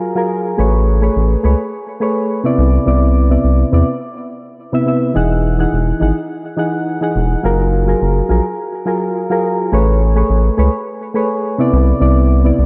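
A gentle 4/4 pulse with a light swing on the sixteenths gives this short sunset chillout clip a relaxed, unhurried sway. Soft electric-piano-like synth keys open the passage at 0.0 s, their gentle, warbling vintage tone full-bodied yet dark, with chorus and delay adding shimmer to the decaying chords. A round analog bass joins at 0.6 s, sitting deep and up front with a sustained, dusky weight under the keys. The harmony drifts through lush major-ninth chords, moving from F#maj9 to Amaj9, Cmaj9 and Emaj9 before circling back. A moderate plate reverb soaks the whole mix in a dreamy haze, and the tuning rests slightly below standard pitch at A4 = 439 Hz.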